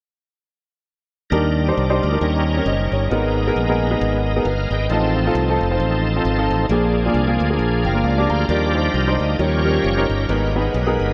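Uptempo gospel at 134 BPM in Eb major, this cut from a longer piece has a soulful, jubilant spirit and a swung 4/4 feel. A warm, natural-sounding grand piano carries the accompaniment with an analog chorus, while a tonewheel organ holds full, shouting sustained chords through a slow rotary speaker, lightly overdriven and colored with chorus vibrato. Underneath, a punchy, direct fingered electric bass sits up front alongside the organ, anchoring the low end. The harmony moves from Ebmaj7 through Eb7 and Abmadd9 to F7 and Bb7, with organ and piano fills leading into an organ solo that begins at 8.5 s over the continuing piano and bass. A huge ambient reverb soaks the dreamy, darkened mix, giving the band a hazy, cavernous glow.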